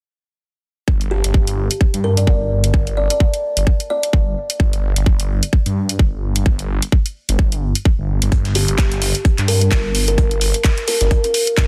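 Bass house at 129 BPM in G minor, this aggressive, swaggering cut rides a swung sixteenth-note feel in 4/4. A thick, detuned saw bass sits up front from 0.9 seconds, its tone swirling through a phaser, saturated by tube warmth and shaped by sidechain pumping, alongside a tight, layered electronic kick that carries the loudest presence in the mix. A garage kit adds handclaps and hi-hat up front, while a woody, hollow kalimba plucks a mellow, ringing melody through dub echo, heard from 1.1 to 4.4 seconds and again from 8.6 seconds. Near the end, a gritty, overdriven sampler-style soul kit slips in at 8.3 seconds with very quiet hi-hat and snare. The sound is dry, with little reverb, and the master is dense and heavily limited in a modern style, cut from a longer piece.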